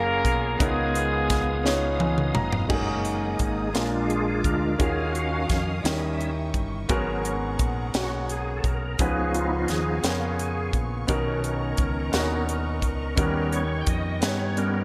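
A bright 1980s-style digital production with moderate plate reverb frames this jubilant, hopeful slow gospel piece in 6/8 at 57 BPM in F# major, cut from a longer work. Up-front horns with light vibrato and digital delay carry the melody only until 2.0 s, over intimate grand piano with audible action noise, a round, punchy fingered electric bass, sustained tonewheel organ chords and a crisp fusion drum kit with a high-tuned snare. A drum and piano fill then leads at 2.7 s into a reedy organ solo with key click and fast rotary speaker, as dark, lush bowed strings enter in the background under rich chords such as F#69, D#m9 and G#m11.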